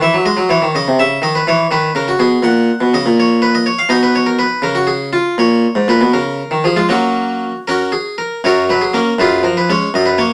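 A single harpsichord, plucked and round with a Flemish character on one set of strings, sits up front and carries this radiant, dance-like baroque-style suite movement alone from start to finish. In 6/8 at 81 BPM, counted in dotted quarters, with a rubato feel in F# major, the harpsichord spans F#2 to F#5 through harmonies like G#7, C#m and Bmaj9. It settles on F# near 6.9 seconds before a new section begins at 8.4 seconds, all set in a wet studio ambience in this brief cut from a longer piece.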